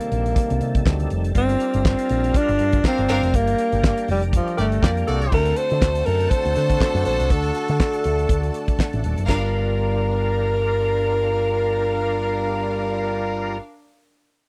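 A breathy, whispered alto saxophone carries the melody up front in this glamorous, sultry disco excerpt, over a gritty overdriven tonewheel organ with chorus vibrato and a slow rotary speaker, a round, punchy envelope-filtered electric bass, and a damped 70s drum kit with a fat snare and tight kick that stops at 9.4 seconds, while a lush bowed string section adds a second line from 2.8 seconds and a distant, roomy horn section plays stabs from 4.6 seconds, all in a dry, close 1970s-style studio sound.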